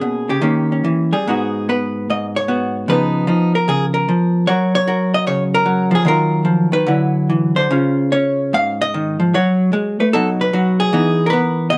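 Swung eighths and a rubato feel sit around a 149 BPM, 4/4 pulse in this cool, late-night solo jazz excerpt in G# minor, where a dark, clean, compressed vintage hollow-body electric guitar, picked and up front in light reverb, spans G#2 to E#5 and moves from an opening D#7b9 through G#m7, C#13, D69 and C#maj9 before settling on Emaj7 at 10.9 seconds.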